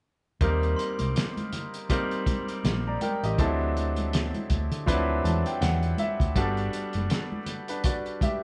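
An unhurried 4/4 groove with a lazy sixteenth-note swing opens this short cut from a lush 1970s-style soul piece, its mood warm and romantic. A cloth-damped, thuddy drum kit sits up front with a fat snare, tight kick and hi-hat, its sound muffled and gritty with a rolled-off top, while soft-handed congas with a thin, bright skin tick along in the background. A hollow-body short-scale electric bass, dark and round through an amp, plays under the band until 7.1 seconds. A clear, polished concert grand piano carries the accompaniment up close, with audible action noise and deep low notes, and it adds a fill from 4.9 to 6.4 seconds. Early on, between 0.8 and 2.9 seconds, a sparkling, bell-like glockenspiel with hard plastic mallets rings faintly in the background. The harmony moves from Eb6 to D9 and settles on Gmaj9, and the whole group plays live in one room with a moderate studio reverb.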